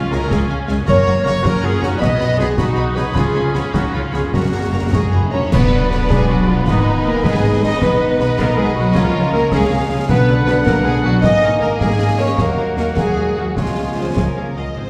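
Soaring and adventurous, this heroic film-score passage in 6/8 is led by a lush, vibrato-rich violin section carrying the melody, with a quieter second violin line, a distant viola section and a smooth cello section beneath, while an intense double bass section anchors the low end. Mellow French horns and very quiet trombones hold sustained chords, bright trumpets add stabs, and a ringing fingerpicked harp plays arpeggios, as a clear clarinet, dark cor anglais and, from 4.9 s, a hollow silver flute weave background lines. Concert snare, bass drum and dark clash cymbals drive the rhythm, timpani play a fill that lands on an ensemble accent at 5.5 s, a cymbal swell briefly rises through the middle, and the whole orchestra sits back in a wet scoring-stage reverb.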